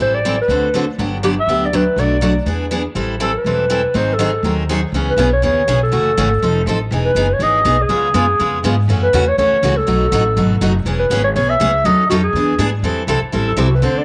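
A fast, swinging 4/4 pulse at 243 BPM drives this fiery excerpt of acoustic string swing in the jazz manouche tradition, moving from A dorian into C# minor at 4.9 seconds. A dark, vintage clarinet carries the solo melody with subtone, light vibrato and scooped notes, over a bright, full-bodied picked dreadnought guitar sitting up front with audible finger squeak, and a woody, thumpy pizzicato upright bass on gut strings. Moderate spring reverb and small-room ambience frame the trio, and the passage is cut from a longer piece.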